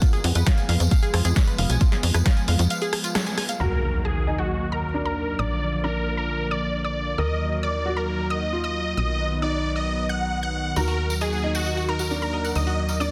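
This uplifting trance piece, cut from a longer track, runs at 134 BPM in a straight 4/4 in Eb harmonic minor, with a driving, euphoric mood. A lush, thick unison pad with chorus and sidechain pumping holds sustained chords throughout, while a tight sequencer bass built from sawtooth and square waves with ring modulation pumps underneath. The opening seconds carry a layered, punchy electronic kick up front, a tape-warm analog drum machine with crash cymbal, filtered hi-hat, rim click and soft-clipped snare, a jingly, distant tambourine, and a round, detuned analog pluck arpeggio with 12-bit sampler grit and tape echo, leading into a break. At 3.6 s an electronic impact lands as huge, detuned supersaw chords take the melody, treated with phaser, cassette tape, tape echo and a filter sweep. Beneath them, a dark, worn baby grand piano with audible action noise and dub echo plays a second line alongside a high, evolving unison pluck set in the background. 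At 10.8 s the tambourine and analog pluck return over the Ebm chord, all wrapped in light digital reverb and a dense, heavily limited modern master.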